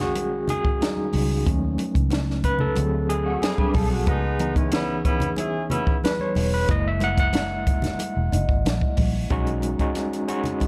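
Lush 1970s-style soul at 92 BPM in B major, romantic in mood, led by a barky, gritty tine electric piano soloing with fast tremolo over a round, foam-muted bass, a dry cocktail kit with a high-tuned snare and punchy kick, and bright background congas, while a lo-fi guitar riff slips in at 3.3 seconds, distant horn stabs arrive at 4.1 seconds, and a mellow, ringing vibraphone returns at 8.3 seconds, all in a dark production with light small-room reverb.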